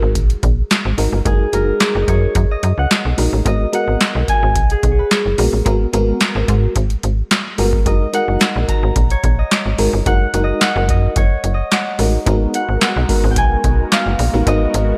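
A mellow, ringing concert harp carries the melody with slapback echo through this slick, late-night early-eighties boogie funk cut in G# minor at 109 BPM, over a booming, overdriven analog drum machine with deep kick, crisp snare, handclaps and metallic hats, a snappy, slap-like FM bass up front, a phased FM electric piano with tremolo, and a lush, detuned unison pad that drifts in behind at 12.3 seconds as the harp solo closes.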